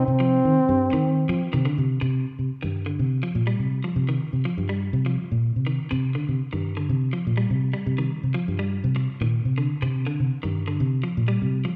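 This short excerpt has the character of cassette tape, with the band playing live together in one large studio room awash in a wet reverb. It is a funky, defiant afrobeat groove in C minor at 123 BPM, moving in a straight 4/4 over a C minor chord. A warm trombone opens up front as the solo voice, punchy and smooth on top with vibrato, stating a brief pop-style melody around C4 that ends by 1.7 seconds. Underneath, a fingered electric bass sits up front with a dark, round, foam-muted tone, direct and amped, ranging from G2 to F3 until 11.6 seconds. An electric guitar at the edge of break-up enters at 0.2 seconds with picked arpeggios between C3 and G3, its slightly broken-up sound bathed in spring reverb and sitting lower in the mix. After the opening section the piece moves into a new section at 2.0 seconds, carried by bass and guitar.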